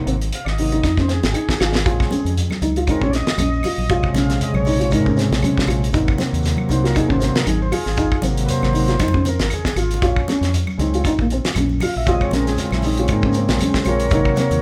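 A swung sixteenth-note afrobeat groove drives this hypnotic excerpt from a longer piece, where a reedy vintage combo organ with light vibrato solos up front over muted felt-piano arpeggios with audible action noise, a round, dark fingered electric bass, and a dry 70s kit with a fat snare and tight kick that fills at 1.6 and 9.0 seconds, while woody claves, a grainy shekere and hard-hand congas sit quietly behind, all captured as a live band in one large, moderately reverberant studio room.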